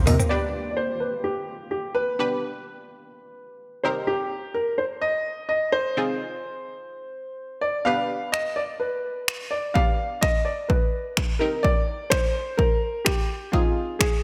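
An up-front baby grand piano carries the melody in this driving, energetic dance-pop passage, its warm, natural tone and short sustain trailed by a digital delay, with the whole mix sitting in a moderate, lush hall reverb. A punchy analog drum machine opens with a brief fill before dropping out, then returns at 8.3 seconds with kick drum, hi-hat, finger snaps, shaker and toms, sounding tape-warm and re-recorded in a small room under gated reverb. Underneath, a bright chord stab built from detuned sawtooth and square waves with a sub octave supplies the accompaniment, its fast attack and decaying filter pluck colored by chorus and a moving notch. The harmony cycles through G, Cm7 and Fm7 in a straight 4/4 feel. The whole has a bright 1980s-style digital sheen, and the passage is cut from a longer piece.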